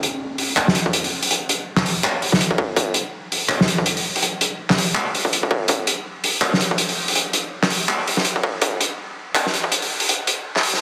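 A dense, heavily limited modern master bathed in a huge ambient reverb gives this tense, heavy half-time drum and bass excerpt at 164 BPM its cavernous weight, with a swung 16th feel across a build-up. A gritty, saturated breakbeat kit sits up front with handclaps, hi-hat and a high-tuned snare, dark and rolled-off on top, playing from 0.0 to 10.8 seconds. A distorted, overdriven electronic kick, high-pass filtered and re-recorded in a small room, joins at 0.9 seconds and drops out at 9.7 seconds.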